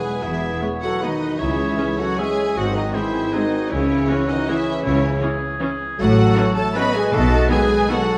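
A rich, vibrato-laden violin section carries the melody in this elegant, sweeping classical passage, cut from a longer piece and moving at 157 BPM in a rubato 3/4, while a clear chamber violin section, a mellow clarinet, a hollow flute section and a smooth-topped oboe spin second lines, French horns and trombones hold sustained chords, bowed cellos and double basses supply the bass, a focused viola section accompanies from 0.6 s, and very quiet hard-mallet timpani sound at 7.1 s, the ensemble set in a dark, wet concert-hall reverb.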